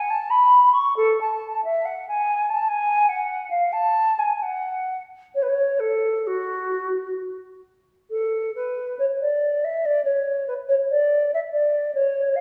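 The recording places a lone silver concert flute in a church or concert hall, its tone carried on a generous, wet reverb that lingers around each note. This short excerpt is a classical, baroque-style fantasia for unaccompanied flute in 4/4, played with a free, rubato feel that gives it a dance-like yet serene character. The flute sits up front, and its sound is pure and hollow, with a crisp attack and vibrato. Its metallic timbre keeps a mellow softness as the line moves between F#4 and C#6. An opening passage gives way to a contrasting second section at 8.1 seconds, and the music breaks off at 12.4 seconds.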